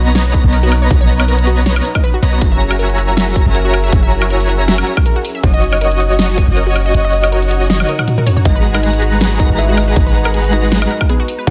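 Driving at 159 BPM in a swung half-time 4/4, this lush, bittersweet future bass passage in G# minor sets a huge, detuned supersaw riff and a deep, boomy 808-style bass over a punchy electronic kick and a pop kit with a fat snare, hi-hat, toms and woodblock, while airy dreamy lead arpeggios, a warbling unison pluck and woody background strings all pump with sidechain through Bmaj9, F#7, D#m7/F# and G#m9. The kick drops out at 6.9 seconds, and a drum fill follows at 7.7 seconds before a round, tine-like thumb-piano-style pluck carries the melody from 8.5 seconds in a dense, heavily limited mix.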